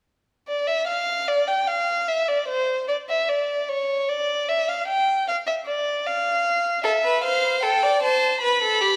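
Driving yet contemplative, this baroque-style fugue for string quartet moves at 76 BPM in 4/4, tuned slightly below standard pitch at A4 = 437 Hz. A warm violin carries the melody alone from 0.5 seconds with soft attacks, vibrato and expressive portamento. At 6.8 seconds a rich, focused second violin joins beneath it, bringing an A minor harmony that turns to Gadd9, all within a moderate scoring-stage reverb that suggests a section of a longer piece.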